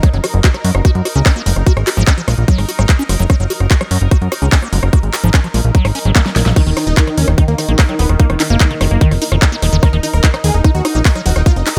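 An overdriven, tight electronic kick sits up front in this driving, intense psychedelic trance excerpt at 147 BPM, joined by a punchy, funky plucky analog bass, a squelchy, resonant liquid acid bass riff with phaser and tape echo, a big-room dance drum kit with a huge overdriven snare, claps, hi-hat, rim click and crash, and a bubbling, chorused stepped-filter texture holding sustained chords, while a detuned supersaw stab melody enters at 6.6 seconds just after a drum fill, all in a dry, tight mix.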